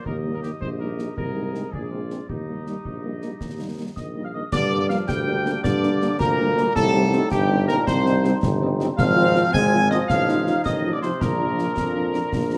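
Rousing and proud, this short cut from a military-style wind band march in Eb major moves at 108 BPM in a straight 6/8, with a mellow trumpet section carrying the melody over a clear tuba bass, a woodwind section's second line, a French horn accompaniment and close, dry concert bass drum, snare and clash cymbals with dark cymbal tones. At 4.0 seconds a ringing glockenspiel played with soft plastic mallets enters with its own line, joined by a pure wooden piccolo and a vibrato-tinged euphonium adding further lines in the background. From 4.5 seconds a very quiet trombone section sustains chords as the harmony moves from Gm through Cm and F7/A toward Bb. A moderate large-studio reverb gives the ensemble some space.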